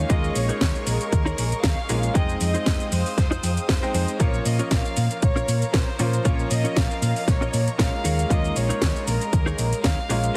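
A bowed chamber violin section leads this groovy, sleek nu-disco clip, its rich, biting and earthy melody carried on light vibrato and trailed by dub echo. Beneath it, a concert grand piano plays brilliant, present accompaniment with a deep low register. A lush studio string section holds smooth sustained chords in the background, pumping against the beat. A clean electric guitar, picked and recorded direct, runs a compressed chorus-tinged riff further back in the mix, breaking into a short fill between 3.2 and 4.2 seconds. A dark, round hollow-body bass anchors the lightly swung groove alongside a punchy electronic kick up front and a house kit with cracking snare, metallic hats and shaker, the drums carrying a tape-warm small-room character. The harmony moves from Eb7sus4 through Fm7 to Bbm, and the whole mix sits inside a heavily compressed, radio-like sound.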